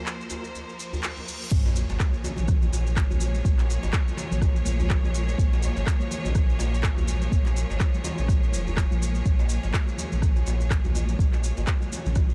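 A deep, up-front electronic kick and a round, sine-like sub bass drive this earthy afro house excerpt from 1.5 seconds, both arriving on the drop, with the bass pumping under clear, bowed studio strings that hold sustained chords with vibrato from the very start. Around them, a produced afro-pop kit adds crash, handclaps and rim clicks, grainy maracas shake in a small room while a tight, cracking djembe sits in the distance, and ringing, high-tuned congas played with soft hands join at 1.7 seconds in the background. A reverse cymbal and sub drop rise quietly from 0.8 seconds into the impact, all set in light reverb with small room ambience and a swung sixteenth-note feel.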